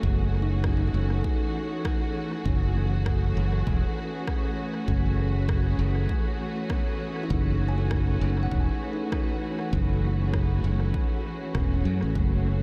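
A bright, growly fingered electric bass sits up front in this spacious, deep ambient dub excerpt at 99 BPM in F# dorian, resting on an F#m7 chord over a punchy, overdriven electronic kick, a very quiet electronic rim click entering at 0.6 seconds, dark, woody sustained strings, a mellow, hollow kalimba whose delayed arpeggios ring in the background from 0.0 and again at 6.7 seconds, and a glassy, chorused harmonics texture.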